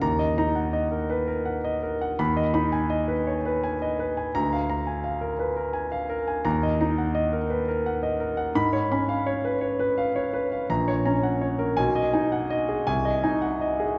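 A solo concert grand piano, clear and smooth with a deep bass and a vintage character, carries this passionate, lyrical romantic character piece in Eb minor, tuned to A4 = 438 Hz and spanning A#1 to Cb6. The music moves in a rubato 6/8 at about 56 beats per minute, counted in dotted quarters, and its harmony drifts from Eb minor and Abm/Eb through Bb7/D toward C#7/G#, F#/A# and G#7/B# by 12.9 seconds. The piano sits up front while a wet concert hall reverb with a 1.9-second decay places the listener further back in the room, and the fourteen seconds are cut from a longer piece.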